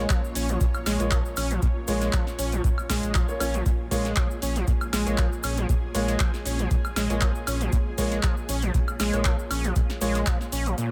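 A trippy, hypnotic acid house excerpt opens on a lush vintage string machine, its sustained chords pumping under sidechain in the background, alongside a squelchy, resonant overdriven acid bass riff with tube saturation, chorus, 12-bit sampler grit and dub echo, and a round, dark analog bass sitting up front and pumping too. A deep, tape-warm electronic kick and an electro drum machine with a punchy snare, metallic hats, handclaps and woodblock set a lightly swung groove, joined by a grainy cabasa and a very quiet, cloudy granular pad that drifts in at 0.2 s. From 1.0 s a clear concert grand piano adds stabs trailed by dub echo, all within light digital ambience.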